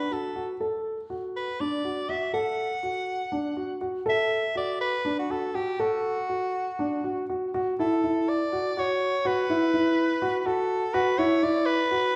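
Pensive and hypnotic, this short cut from a longer piece of contemporary chamber music moves in an uneven 7/8 at 243 eighth-note beats per minute with a straight feel, centred on B minor. A dark, mellow baby grand piano plays arpeggios in a narrow middle register throughout, its smooth, vintage tone sitting up front. Over it, a soprano saxophone carries the solo melody, raspy and gritty yet clear, with light vibrato, punchy attacks, scooped notes and a smooth top end in a pop-flavoured style. The harmony rests on a rootless B7 colour, returning to the same chord when the second section begins at 7.5 seconds. Both parts sound in a wet recital hall, as if captured in a church or concert hall, with reverb that lingers for about 1.6 seconds.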